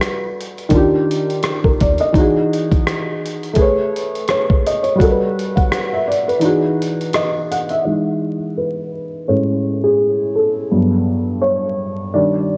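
A swung 84 BPM groove in 4/4 opens this dreamy, cosy lo-fi hip hop excerpt, with a dusty sampler-style kit of hi-hat, rim click and thumpy kick sitting up front, gritty and compressed; the kick drops out at 6.4 seconds before the drums stop at 7.8. A felt-muted upright piano, dark and intimate with audible action noise, carries major-ninth and major-seventh chords in E major through a low-pass filter, while a woody pizzicato upright bass sounds briefly in the background near the start. From 7.9 seconds the piano plays alone under a filter sweep, the mix soaked in plate reverb and vinyl crackle.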